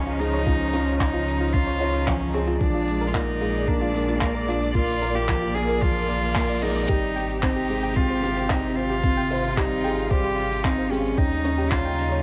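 A close, reedy cello stands out up front, carrying the bowed melody between Bb3 and Ab4 with a period-style gut-string tone and a cassette-tape patina. This tender, luminous piano and strings electronica fragment moves at 112 BPM in Ab major, cut from a longer piece. Beneath it, a dark, woody upright piano plays a boxy, short-sustain riff, while a chamber string section holds smooth, vibrato-rich sustained chords that breathe with sidechain pumping, and a deep sine sub bass anchors the low end. A soft, round pluck, set back in the mix, adds arpeggios coloured by chorus, analog delay and 12-bit sampler grit. Brushed drums with handclaps and hi-hat enter at 0.2 seconds, a muffled, thumpy electronic kick joins at 0.5 seconds, and a brief reverse cymbal at 6.4 seconds leads into the Abmaj7 chord, with the harmony moving from Dbadd9 through Bb7 and Abmaj7 before landing on Eb7. The whole has the light reverb and small-room intimacy of a home cassette recording.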